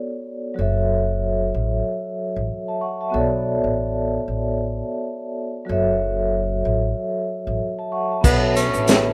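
A rough home demo mix in a small room gives this moody, dark boom-bap hip-hop fragment in B minor a close, unpolished feel at 94 BPM, with a swung 16th-note lilt. A metallic, ringing vibraphone played with medium mallets opens at 0.0 seconds, its slow motor vibrato passing through cassette tape coloring and filtering as it outlines Bm9 and F#m7 chords. At 0.6 seconds a woody, growly pizzicato upright bass joins up front with steel-string bite, holding low roots beneath the vibraphone. At 8.2 seconds the texture fills out just as the excerpt is cut off: a muffled, lo-fi vintage drum kit with a tight kick, medium-tuned snare, hi-hat and crash, a grainy egg shaker tucked in the background, and a very quiet, lush bowed string section sustaining smooth chords. Over them a breathy tenor saxophone slips in briefly with subtone, light vibrato and scooped notes, its jazz-style phrase filtered and trailed by digital delay.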